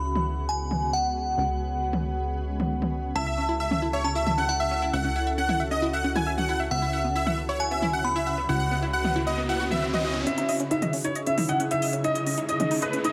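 Soaring and bittersweet, this uplifting trance fragment opens with a glassy synth bell, a shimmering ambient pad, a plucky analog bass and a crisp, overdriven big-room drum kit, then a huge, detuned supersaw melody and a lush unison pluck arpeggio arrive at 3.2 seconds, a background riser builds from 8.4 seconds, and at 10.3 seconds an intimate grand piano with audible action noise takes over the second line as filter sweeps on piano and supersaw drive the build-up, all bathed in a lush hall reverb.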